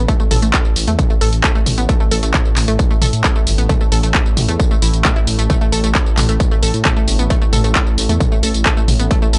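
A dry, gritty hardware recording with transformer saturation and a dulled top end frames this short excerpt cut from a longer stretch of dark, driving peak-time techno in a straight 4/4. Up front, a layered, distorted electronic kick re-recorded in a large room sits beside a punchy, tape-warm analog drum machine playing handclaps, hi-hat, tambourine and toms, with sidechain pumping on its hats, toms, cymbals and percussion. Beneath them, a deep, rumbling detuned sawtooth bass with a beating quality sustains under the groove and pumps with sidechain compression. A lush, warbling unison pluck carries the riff with a bright, vintage edge, a noise layer, tape echo and the same sidechain pumping. Far in the background, a moody, full-bodied ambient pad with a sub octave, chorus and built-in reverb swells in slowly as a dark drone from 0.1 seconds, breathing with the pumping until the end at 9.4 seconds.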